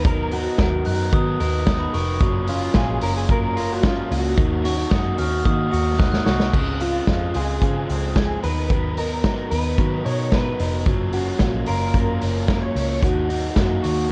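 This breezy, youthful stretch of jangly indie pop at 111 BPM opens with a boomy, up-front vintage drum kit carrying a gritty sampler edge, a dark, round foam-muted bass, a slightly broken-up lead guitar through a small old amp with ensemble chorus and analog delay, a raw overdriven garage guitar, and a twangy fingered guitar playing arpeggios over chords moving from Cbmaj7/Eb to Gbmaj7 and Ebm. A bright, sparkling glockenspiel rings in the background from 0.9 to 6.5 seconds, and a drum fill then leads into a second section that starts on Dbmaj7. The whole mix sits in light small-room reverb with the lo-fi hue of cassette tape.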